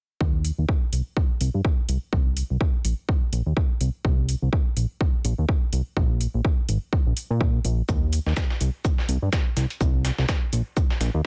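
A swung sixteenth-note groove in four drives this feel-good, euphoric piano house passage, cut from a longer piece. A punchy, tape-warm electronic kick sits up front from the start, joined at 0.4 seconds by metallic electronic hi-hats, both carrying a touch of studio reverb. Underneath, a fat analog bass with a detuned sawtooth character and a ring-modulated edge pumps against the kick through sidechain compression while a filter sweep runs across it. From 7.9 seconds a gritty, sampler-style soul kit adds hi-hat, shaker and a fat, compressed snare, all thinned by high-pass filtering and set lower in the mix. The overall sound stays fairly dry.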